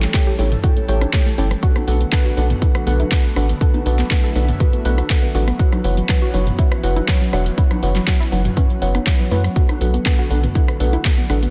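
Dreamy and expansive, this progressive house excerpt in B minor moves at a straight 121 BPM through A7, Bm7 and F#7sus4. A punchy, up-front electronic kick and a tight, driving sawtooth sequencer bass pump with the sidechain alongside an airy, breathy pad that sits in the background under chorus and phaser. A lush, detuned unison pluck plays arpeggios with tape echo, while a deep, nasal chord stab adds dark stabs coloured by chorus and echo, both pumping with the sidechain. A layered house kit of cabasa, handclaps, hi-hat and rim click runs throughout, and electronic congas and toms, re-recorded in a small room, murmur in the background from 0.4 s to 11.0 s, all within digital ambience and a dense, heavily limited master.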